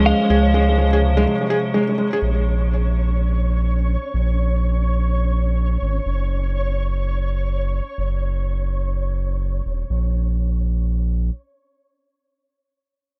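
Swung sixteenths at 125 BPM in 4/4 drive this cerebral, intricate IDM fragment in Bb minor, where an icy, crystalline glass pad with chorus holds chords and a felt-muted upright piano plays mellow, delayed arpeggios over a deep, up-front analog bass with tube saturation, a clean electric guitar adds a brief tape-echoed melody, a break arrives at 1.3 seconds, and a grainy, flickering texture lingers until 9.9 seconds before the bass carries on alone to 11.3 seconds.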